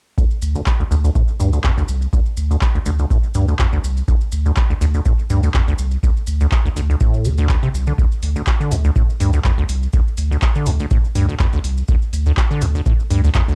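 A rubbery, resonant acid bass riff with cassette-tape coloring leads this raw, trippy acid house excerpt, over a thick, saturated sub bass pumping against a deep, up-front electronic kick, an analog drum machine's handclaps and metallic hi-hats, and faint, mellow maracas, set to a swung sixteenth-note groove in a dark production with light reverb.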